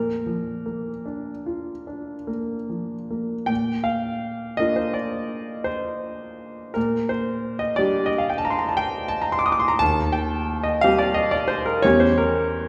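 Flowing in a rubato 9/8 at a slow 48-60 BPM counted in dotted quarters, this tender, dreamy romantic nocturne in Bb major is a short excerpt cut from a longer piece, played on a solo grand piano tuned to A4 = 435 Hz. The piano sounds clear and intimate, with audible action noise, spanning Eb2 to Eb6 and sitting up front even though it is heard from further back in a recital hall whose wet reverb lingers for 1.7 s. The harmony drifts from Bb through Gm/Bb and Cm/Eb before reaching an Edim7 at 11.8 s, just ahead of the cut at 12.7 s.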